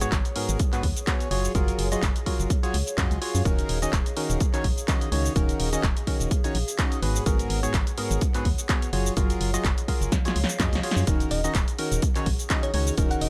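An overdriven, punchy electronic kick sits up front in this energetic, soulful piano house excerpt at 126 BPM in Eb minor, with a swung 16th-note feel, joined by a punchy analog drum machine of handclaps, hi-hat, shaker and snare and a drum fill at 10.1 s. A hollow, percussive organ stab carries the riff through lush chorus, tape echo and sidechain pumping over a dark, organ-like FM bass, while a warbling, nostalgic tape-like pad hums in the background over Abm9, Gbmaj9 and Ebm7 chords. At 11.3 s a round, tine-like thumb-piano-like pluck enters with chorus and phaser, all in a dry mix.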